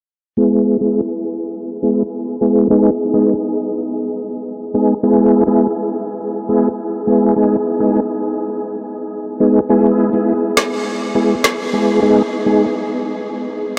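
Tough and sultry, this dancehall excerpt at 103 BPM drifts through a dreamy mix soaked in huge ambient reverb, with a mellow, round tonewheel organ carrying the accompaniment up front, colored by chorus vibrato, a slow rotary speaker and a low-pass filter sweep. The organ alternates between E and G#m throughout. An electronic snare drum and rim click with a woody snare sound appear only briefly, from 10.6 to 11.6 seconds.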